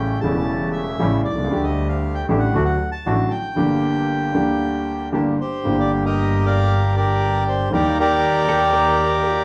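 A reedy, dark bandoneon carries the melody up front in this passionate, tense tango excerpt with a rubato feel, backed by a smooth, vintage grand piano, a second bandoneon adding stabs in the background, and a biting, earthy bowed double bass with light vibrato sitting distant, all in a wet, large studio reverb, while a very quiet, clean hollow-body jazz guitar slips in a brief second line at 8.5 seconds.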